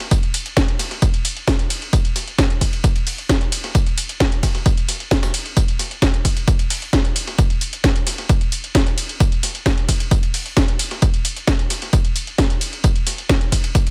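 A dry cut with a faint mains hum carries relentless, hypnotic techno in straight 4/4, where a punchy, layered electronic kick sits up front beside an electronic kit of cracking snare, metallic hats and ride cymbal, while a gritty, compressed, tape-toned breakbeat sampler kit of hi-hat, medium-tuned snare and tambourine, thinned by high-pass filtering, murmurs in the background through the whole 13.9 seconds.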